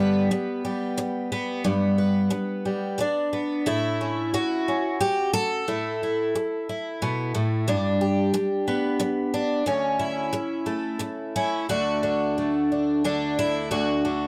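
Loosely rubato in a lilting three-beat metre, this peaceful, gentle folk excerpt features a single picked twelve-string acoustic guitar playing solo, its shimmering, octave-doubled tone sitting up front and ranging from low D2 to B4. The harmony drifts between G and A before settling toward D, with a brief new passage arriving at 11.7 seconds. Close, detailed miking and light reverb give the instrument an intimate yet airy presence.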